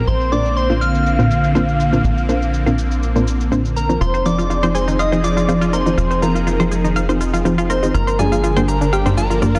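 Over a straight 4/4 pulse, this emotional, expansive progressive house passage is driven by a tight, punchy sequencer bass up front and a quiet, overdriven cabasa filtered low, with a full-bodied detuned unison pluck firing tape-echoed stabs. A lush supersaw pad with phaser holds sustained chords moving from Bbadd9 to Fm7 and then Gm, while a thick, dark unison lead carries the melody with vibrato and tape echo, joined higher up by a pure, gentle FM synth bell that warbles through chorus and echo. At 4.0 s a round analog pluck joins with chorused, echoing arpeggios, all sitting in light reverb within a dense, heavily limited modern master.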